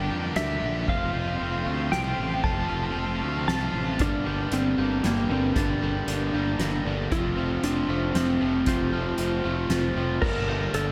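Brooding and melancholic, this post-rock passage in 3/4 builds through its first 4.0 seconds, with a dark, compressed lap steel carrying the slide melody through slapback and tape echo while a punchy, fuzz-drenched fingered bass sits up front. Two overdriven guitars, one bright and picked in the background with slapback echo and one hollow-bodied, churn out the riff, while a very quiet, twangy clean guitar and a smooth, bell-like glockenspiel with tape echo ripple arpeggios over a deep, moody sawtooth pad with chorus and phaser. A soft-mallet drum kit with a fat snare and boomy kick enters at 0.4 seconds, and concert hall reverb lends the whole mix a big arena sound.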